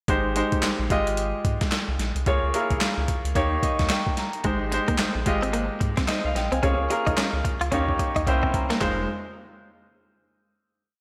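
A hard-swung, boom bap drum-machine beat, gritty and thumpy with the snare layered with handclaps, drives this bouncy, confident new jack swing piece, underpinned by a round, dark synth-funk bass line with muted ghost notes. A clear, polished baby grand piano pushes drop2 chords with grace notes and short fills through a slapback echo, and at 4.4 seconds a clean, direct-recorded electric guitar joins with a muted, picked single-note line colored by analog chorus. A drum fill and piano fill lead into a closing F minor seventh chord at 8.8 seconds, all set in a lush hall reverb that gives a big arena sound.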